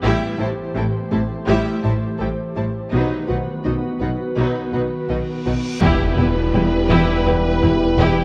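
A steady, straight 4/4 pulse at 83 BPM carries this brooding, tense cinematic excerpt of hybrid orchestral and electronic film score in E harmonic minor, where focused bowed violins, lush violas, a distant cello section and double basses blend with a glassy, ethereal FM pad with ensemble chorus while a very quiet, squelchy resonant blip pluck spins arpeggios over chords moving from Am7 to B. A huge, bright reverse cymbal rises at 5.6 s into an impact at 5.8 s, where the music settles on E minor as a soft-attack symphonic violin melody enters on B4 above mellow French horns, tight trombones and a deep sine sub bass with octave. The whole mix sits in a moderate scoring-stage reverb and carries the worn, warbling pitch drift of old cassette tape.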